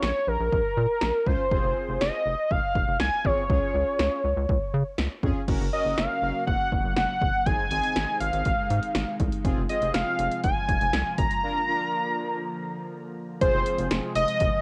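A bold, retro octave-doubled sawtooth lead with chorus and vibrato carries the melody up front in this driving, nocturnal synth-pop excerpt at 121 BPM, over fat, detuned synth brass and a rubbery, nasal square bass that moves through Bbm, Fm, Db, Gb and Ab. A punchy analog drum machine with tape-warm kick and snare, hi-hat and crash keeps a straight 4/4 pulse. At 5.5 seconds a swirling, phased sawtooth pad arrives beneath, and a break from 11.4 to 13.4 seconds lands on Bb before Fm returns, all within light digital ambience and the cassette tape coloring of a home recording on the lead, brass and pad.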